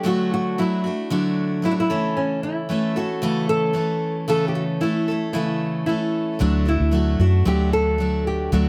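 A nylon-string guitar carries the melody in this carefree, sunny pop excerpt, its small, fingerpicked tone sitting up front over a bright, full-bodied picked steel-string acoustic guitar that plays the accompaniment through the whole passage. The harmony moves from D to A/C# and back to D, and at 6.4 seconds a vintage muted fingered electric bass enters with a dark, round, punchy sound. Light reverb gives the straight 4/4 groove a gentle sense of space.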